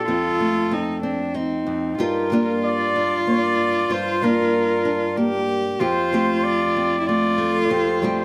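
Close, detailed microphones and a light reverb give this short fragment of a longer acoustic folk-pop ballad an intimate, nostalgic glow. It moves at 95 BPM in a straight 3/4, opening on F, shifting to Gm7 at 2.0 seconds and settling on Fadd9 at 5.8 seconds. A flugelhorn carries the melody in a classical style with vibrato, set distant and roomy as a solo voice. Beneath it, a single bowed cello plays an up-front second line with light vibrato, a soft attack and an airy sul tasto tone. A small, fingerpicked nylon-string guitar provides the accompaniment close up, its finger squeaks audible. A picked steel-string acoustic guitar adds arpeggios a little lower in the mix with an auditorium-like sense of space and finger squeaks of its own, and all four parts play throughout.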